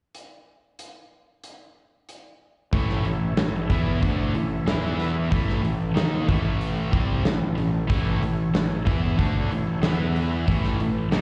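A huge arena drum kit with a punchy kick and gritty vintage sampler texture opens alone for 2.7 seconds before a growly, fuzz-laden fingered bass, a sludgy overdriven guitar, a bright, tight distorted guitar with slapback echo and a key-clicking tonewheel organ on fast rotary all crash in at 93 BPM, driving a swaggering classic rock riff in A major that sounds like a live gig heard through the venue's PA onto cassette tape.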